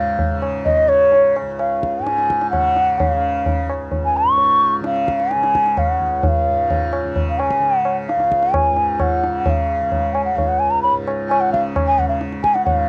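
In a straight seven-beat cycle that gradually speeds up, this radiant, serene Hindustani classical fragment, cut from a longer piece, sets an airy bamboo bansuri up front, singing an expressive, tongued melody with vibrato over a softly plucked tanpura drone that buzzes and shimmers low beneath it. High-tuned tabla joins at 0.2 seconds, close and dry with a short ring. Both bansuri and tanpura carry a cassette-tape tint, and the home cassette recording sits in light reverb.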